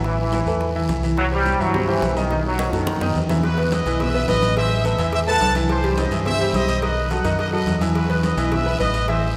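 Driving and passionate, this salsa fragment, cut from a longer piece, opens with a brilliant trombone section carrying the melody in a low register, its tight, vintage tone shaded with vibrato and a soft attack. A drum fill at 2.3 seconds leads into the second section, where a bright trumpet section takes over the tune at 3.4 seconds, up front and playing with light vibrato in a higher range. Underneath, a clear but worn baby grand piano supplies the accompaniment, while a dark, round fingered electric bass sits up front with a direct, amped sound. Ringing, hard-handed congas and low-tuned bongos and cowbell stay in the background, joined by a raspy guiro that sounds close and dry. Everything moves over a cycling Amadd9, C, B7 and Esus2 progression, and a concert hall reverb lends the recording a wet, spacious sheen.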